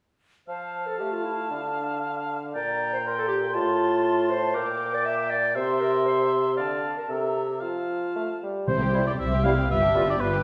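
Lively and graceful, this short passage cut from a quick classical-period movement for symphony orchestra moves at 118 BPM in a straight 2/4, in F major. For the first 8.7 seconds the woodwinds carry the music alone: a hollow, airy small flute group, a mellow cor anglais placed up front, and a distant, roomy clarinet share the upper lines, while the bassoon supplies the accompaniment below. The harmony turns through F, D minor and G minor before a C7 settles back onto F. At 8.7 seconds a new section begins on C, as muted strings in the background take the melody with a dark, veiled, con sordino sound, the violins over violas, cellos and double basses. Timpani with medium mallets on calf heads play briefly, close and dry, and just after the strings enter a very quiet French horn section adds sustained chords with a vintage tint, continuing as the harmony moves to G7. The whole passage sits in a wet recital-hall reverb.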